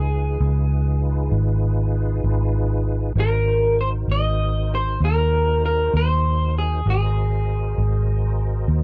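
Slow blues in 12/8 at 65 BPM, laid-back and soulful in Ab mixolydian, this short cut from a longer piece moves from Db9 to Ab9 at 3.2 seconds. An electric guitar through a small old amp carries the melody up front with a slightly broken-up, compressed, lo-fi tone and lush chorus, while a tonewheel organ sits lower in the mix, holding clean, clear sustained chords through a slow rotary speaker with chorus vibrato and audible key click. A round, dark, foam-muted vintage fingered bass anchors the low end up front, and the dry, close 1970s-style studio sound keeps the performance intimate.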